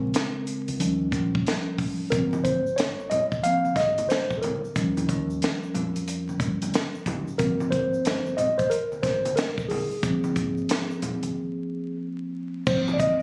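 Relaxed jazz-hop at 91 BPM in Ab major, with a swung sixteenth-note feel, cut from a longer piece where a mellow, clean tine electric piano sits up front and carries a solo over Bbm7, Eb7 and Ab6 changes. A round, dark fingered electric bass and a compact cocktail drum kit with a punchy kick, high-tuned snare and dusky cymbals hold the groove, while a ringing egg shaker and hard-handed congas join at 2.1 seconds, before a break from 11.3 to 12.7 seconds. Vinyl crackle and club reverb give it the sound of a phone held up in the room.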